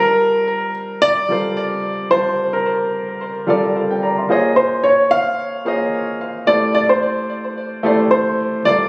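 Hypnotic and late-night in mood, this amapiano fragment moves at 110 BPM in 4/4 with a 55% swing on the sixteenths, set in G dorian. A warm grand piano carries the melody between Bb4 and F5, its short-sustained notes up front and trailed by a delay. A second grand piano plays the accompaniment across a broader span from G3 to C6, equally close and clipped in sustain, sitting a little beneath the lead. The harmony shifts from Gm11 to Bbm11 at 4.3 seconds and settles on Am7 at 6.5 seconds. A lush hall reverb with a 2.2-second tail surrounds the pianos, while the phone-in-the-room capture, club reverb and compression lend the sound a roomy, squeezed character. The whole 8.9-second passage is cut from a longer piece.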